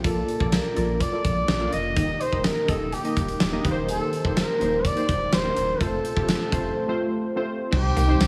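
A punchy, roomy flugelhorn carries the melody with scooped notes and tape echo in this glossy, uplifting 1980s-style pop excerpt at 125 BPM. Up front, warbling, detuned analog keys with chorus and a filter sweep play over a round sine sub bass and a huge arena drum kit with a fat snare, punchy kick, hi-hat, crash cymbal and tambourine, moving through Bbmaj7, Eb, Cm7/Eb and F. At 7.7 s, as the harmony turns to Cm, a clean, picked electric guitar riff slips in quietly in the background, and a lush, thick unison pad joins at 8.0 s.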